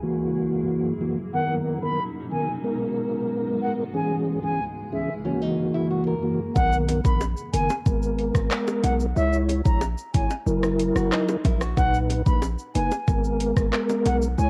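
A pure, expressive concert flute carries the melody from 1.3 seconds alongside a soft, flute-like tonewheel organ with chorus vibrato and key click, a blurred granular cloud pad, and brief fingerpicked nylon-string guitar arpeggios, all colored by cassette tape in this sunny, summery dancehall excerpt in B major at 92 BPM. At 6.6 seconds a punchy, heavy 808-style bass and an electronic island pop drum kit with knocking kick, metallic hats, handclaps, rim click and shaker arrive up front, with tight, high-tuned bongos close behind. The home cassette recording has light reverb and digital ambience, the organ and pad pump against the sidechain, and the flute carries tape echo.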